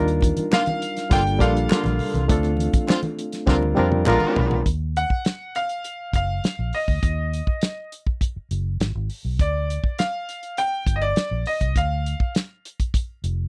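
A barky, reedy electric piano with light overdrive and fast tremolo opens this lush, smooth 1970s-style soul excerpt at 101 BPM, joined by a round, foam-muted electric bass, a damped drum kit with a tight kick, and low-tuned congas sitting very quietly beneath; from 0.5 seconds come punchy horn stabs, a bright grand piano melody and crisp group handclaps, the claps also very quiet. After a drum and electric piano fill, the electric piano, horns, congas and claps drop away at about 4.7 seconds, leaving the brilliant piano line over bass and drums as the chords move from Ebmaj9 through Ebmadd9 to Abm and G7(no3). The sound is dry and close, in the manner of a 1970s studio.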